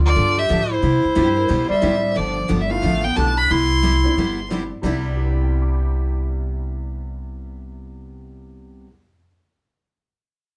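A clear, focused bowed fiddle carries the melody up front until 4.5 s in this cheerful, swinging western swing country piece at 180 BPM in C major, joined by a mellow subtone clarinet with scooped notes on a second line, a woody, thumpy pizzicato upright bass, a bright picked dreadnought acoustic guitar with finger squeak, a brief dark slide line from a clean lap steel guitar in the background, and a detuned, jangly honky-tonk upright piano entering at 1.8 s, the band playing live in one room with moderate studio reverb.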